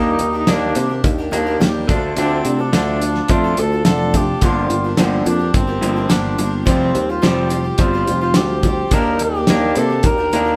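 A straight 4/4 groove at 107 BPM carries this dusty, wistful stretch of folk and heartland rock in G minor, cut from a longer piece, with a damped 70s drum kit entering at 0.2 s, its fat snare and tight kick sitting up front beside a growly picked electric bass. A shimmering, octave-doubled twelve-string acoustic guitar, boxy with audible finger squeak, picks through Ebmaj7, Dm, Gm7 and Fsus2, while an electric guitar through a small old amp plays a dark, slightly broken-up, lo-fi riff. Over the band, recorded live in one large studio with moderate reverb, a mellow cor anglais sings the melody in a classical style with light vibrato and a smooth top.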